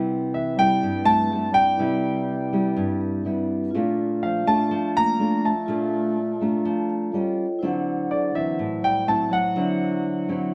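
Light reverb gives a gentle room to this short cut from a longer bossa nova, with a clear concert grand piano carrying the melody up front over a dark, thumb-plucked nylon-string guitar and a metallic, ringing vibraphone played with medium mallets and the motor off. The mood is sunny and romantic at 124 BPM in a straight 4/4 in C major, tuned to A4 = 436 Hz, while a breathy bass clarinet adds a jazz-style second line with vibrato and scooped notes. The vibraphone slips in a fill from 6.2 to 7.6 seconds as the harmony moves from Cmaj7 through Bbmaj7 and Aaug7 to D9.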